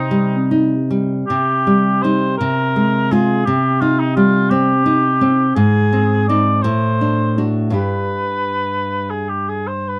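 The pulse moves in 6/8 at 56 beats per minute, counted in dotted quarters, with uneven beats and a free, rubato feel. This short, yearning and melancholic passage from a longer romantic duo sits in C minor and is tuned to A4 = 444 Hz. A fingerpicked nylon-string guitar carries the accompaniment in a full-bodied classical voice, sitting slightly louder than the oboe, which sings the melody with a mellow tone and light vibrato, its sound distant and roomy. After a brief opening gesture, the phrase begins anew at 1.3 seconds, and the harmony moves from Cm through Fm/C and back, then on to Ab, D7/A and a closing G at 7.8 seconds. The dry, close 1970s-style studio sound carries a touch of light reverb, keeping both instruments up front.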